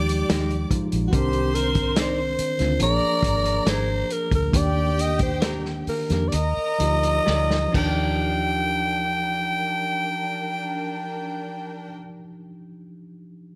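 A growling alto saxophone sits up front and carries the melody, its raspy, subtoned tone full of scooped notes and light vibrato in a close-miked jazz style. This is a short excerpt of lush 1970s-style soul in a straight four, moving through rich chords such as Fm9, Cm9 and Ebmaj9. Behind it a studio violin section plays a smooth, bowed second line with even vibrato, while a mellow tine electric piano supplies clean accompaniment and lingers on to 13.6 seconds. A muted fingered electric bass gives a round, punchy, dark low end, and a bright, twangy clean electric guitar picks a riff in the background. The vintage drum kit sounds muffled and lo-fi, with dark cymbals and a punchy kick, as the pace slows from 1.1 seconds and a drum fill leads into a new section at 8.2 seconds, after which the drums fall away. Light studio reverb surrounds the ensemble.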